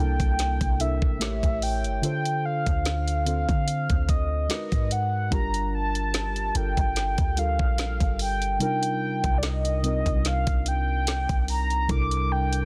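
A mellow, horn-like synth lead carries the melody in this short cut from a slow contemporary R&B piece in G minor at 73 BPM, singing a round, sustained line high in its range with gentle vibrato and a soft chorus sheen. Beneath it, muted, felt-like synth keys lay down dark, intimate chords that decay quickly, while a clean 808-style bass supplies deep, boomy sine tones. The drum kit enters at 0.2 seconds with a knocking kick, woody snare and tape-softened hi-hats, sitting up front with a slight swing on the sixteenths. A very quiet, glassy FM bell warbles briefly at 1.6 seconds, adding a crystalline vintage glint. The harmony drifts through rich extended chords such as C13, Abm9, Gm9 and Cm11, giving the sensual, longing mood a close, dry sound under a dense, heavily limited modern master.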